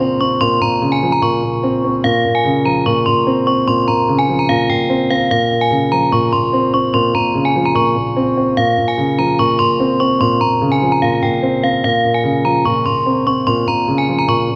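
A metallic, inharmonic FM bell carries the melody from the first moment, its bright, ringing tones coloured by chorus, phaser and a digital delay, over a dark, boxy concert grand piano that holds down the deep, mellow accompaniment. This eerie, hard-hitting half-time hip hop fragment sits in a moderate concert hall reverb, with both parts kept up front. The music moves into a new section at 11.8 seconds before the fragment is cut off at 14.6 seconds.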